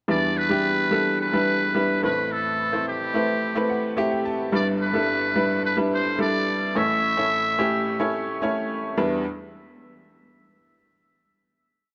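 A trumpet with a metal mute carries the melody up front, its buzzy, raspy tone shaping short song-like motifs in a pop style until it stops at 8.4 seconds. Beneath it, a bright upright piano with a woody, slightly detuned character plays syncopated chords in drop-2 voicings, and its audible action noise gives the sound an intimate, worn feel. The piano adds a short fill at 3.4 seconds and sustains past the trumpet into the final chord at 9.0 seconds. This is a brief, complete pop piece in E minor at 108 BPM in a straight 4/4, moving through Em7, Amadd9, Em7/G and A before settling back on Em7. Light reverb surrounds the two players, and the mood is dramatic and bittersweet.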